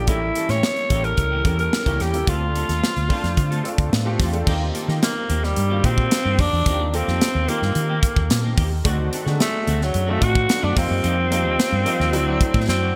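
Polished 1980s jazz-funk pop with a nocturnal, slick mood, moving at 110 BPM in a straight 4/4. A growling, raspy alto saxophone with breathy vibrato carries the melody up front over a warm concert grand piano treated with ensemble chorus, a round, punchy foam-muted fingered electric bass, and a dark, clean picked electric guitar riff with analog chorus sitting in the background. A tight, up-front studio drum kit with bright cymbals and gated reverb drives the bright digital production through chords such as A7b9, Eb6 and F9sus4, with a section change at 4.5 seconds and a drum fill at 12.7 seconds as the excerpt cuts off.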